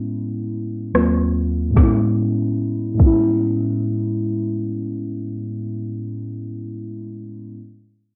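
A slow 73 BPM pulse in 4/4 carries a gentle swing on the sixteenths, giving this short cut from a longer contemporary R&B piece a smooth, romantic sway in A major. Muted, felt-like synth keys hold the accompaniment from start to finish, their intimate, dark tone built from triangle and sawtooth layers with a breath of noise, a fast attack that decays, and a soft chorus shimmer. A filter sweep shapes the opening moments as the harmony moves from Amaj7 to D#m6 and back to Amaj7. The smooth R&B drum kit enters at 0.9 seconds and drops out at 3.2 seconds, its electronic, produced sound combining a soft kick, a woody snare, rim clicks and a crash cymbal, all colored by cassette tape warmth and the air of a large room. Both parts sit up front in a hazy, lo-fi mix that carries the muffled character of a home cassette recording and a light reverb.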